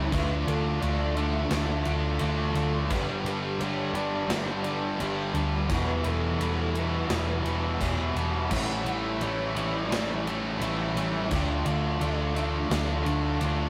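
A rough rehearsal-room recording with warm saturation and wet reverb frames this hazy, wistful shoegaze and dream pop rock fragment at 86 BPM, where three riffing guitars (a crunchy overdriven one, a double-tracked distorted one up front, and a semi-hollow one set in the background) ride over a dark, round hollow-body short-scale bass, a gated 80s kit with a punchy kick and bright cymbals in a stone room, and a soft sine lead with chorus, tremolo and vibrato floating behind, across a Dm, G, Em, A7sus4 progression.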